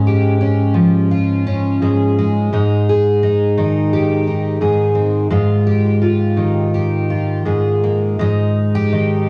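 Peaceful and gentle, this brief folk fragment from a longer piece features a solo fingerpicked twelve-string acoustic guitar at a rubato 85 BPM in 4/4; its shimmering, octave-doubled, full-bodied tone sits up front as the harmony moves from Db/Ab through Ab and Ebadd9/Ab to settle on Ab5 at 8.2 seconds, all tuned to A4 = 438 Hz and captured as a home cassette recording with moderate studio reverb.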